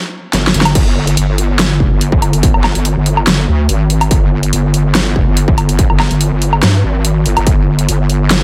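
A half-time 4/4 pulse at 143 BPM drives this chaotic, heavy wobble dubstep excerpt, where a drum fill at 0.3 seconds launches a resonant, detuned square-and-sine wobble bass with chorus and overdrive, up-front dubstep drums with a huge snare, bright hats, crash cymbal and woodblock, and a distorted, tape-warm electronic kick that joins at 0.8 seconds, all in a dry mix.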